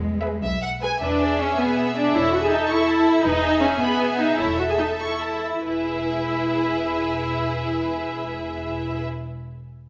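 An up-front, even-toned viola section carries the accompaniment in this spirited excerpt of a quick classical-period movement for string orchestra in E major and rubato 6/8 at 88-110 BPM, as an intense studio violin section with light vibrato sings the melody from 0.2 s alongside a focused, lush second violin line, while a soft-attack, expressive cello section sits in the background and a clear double bass section anchors the E, E7 and A/E harmony, with the pulse slowing between 2.7 and 5.7 s inside a reverberant recital hall.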